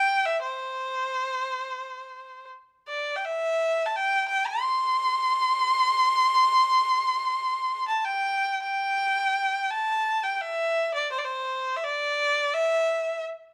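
Pastoral and festive, this fragment of Chinese traditional music in C gong mode moves at a rubato 85 BPM in 4/4, with a lone bowed erhu playing up front between C5 and C6 for its full 13.2 seconds, its nasal, earthy tone colored by light vibrato and portamento, a new section arriving at 9.0 seconds, and close, detailed microphones capturing it in light reverb.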